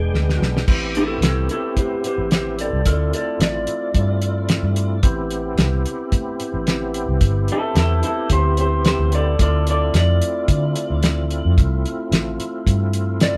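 A live-in-one-room sound with moderate studio reverb frames this mournful, smoky soul blues excerpt in A minor at 110 BPM, a straight-eighth feel carrying a light sixteenth-note swing over an E7#9 that resolves to minor ninth chords. A cloth-damped drum kit with a fat snare, tight kick and dark cymbals opens with a fill at 0.1 seconds, sitting up front beside a round, foam-muted fingered electric bass with an amped, punchy tone. From 0.7 seconds a dark, slightly broken-up and compressed electric slide guitar takes the solo melody, while a full, lightly overdriven tonewheel organ with second-harmonic percussion, chorus vibrato and a slow rotary speaker fills in the accompaniment.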